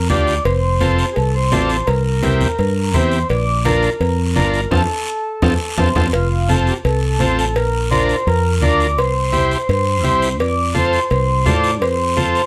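An overdriven combo organ accompanies this joyful, danceable cumbia, its vintage, buzzy tone shimmering with light vibrato up front over a round, fingered electric bass. A mellow, reedy accordion carries a second line, while congas, ringing cowbell and timbales sit in the background and a raspy guiro adds close, dry scrape. A band accent from 4.7 seconds, capped by a drum fill, pushes this excerpt from a longer piece into its second section at 6.1 seconds, all in a moderate studio room.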